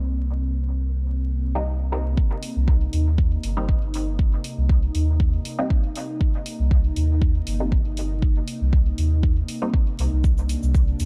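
A deep, layered electronic kick drum lands up front at 2.2 seconds in this nocturnal, cavernous dub techno piece at 119 BPM in C minor, joined by a faint hi-hat and cabasa pair over a round, soft sub bass, while muted, nasal chord stabs from 1.6 seconds carry chorus, phaser and dub echo, and an airy, breathy pad sustains a Cm7 chord with the sub bass sharing its sidechain pumping, the whole set in a dark production with vinyl crackle and a filter sweep across the opening 2.2 seconds.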